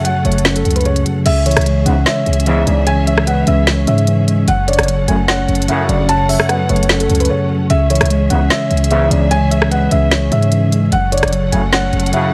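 Trap hip hop at 149 BPM in a half-time feel and C# minor, menacing and brooding, where a soft, felt-muted upright piano with audible action noise carries the melody over a worn, slightly out-of-tune tine electric piano, lush bowed strings holding dark chords, crisp hats and a woody snare up front, a punchy, heavy 808 bass entering at 0.2 seconds, a round octave-layered synth lead with chorus, tremolo and digital delay sitting in the background from 1.5 seconds, and vintage brass stabs from 1.9 seconds, all under light reverb and vinyl crackle, with a brief break at 7.3 seconds in this cut from a longer piece.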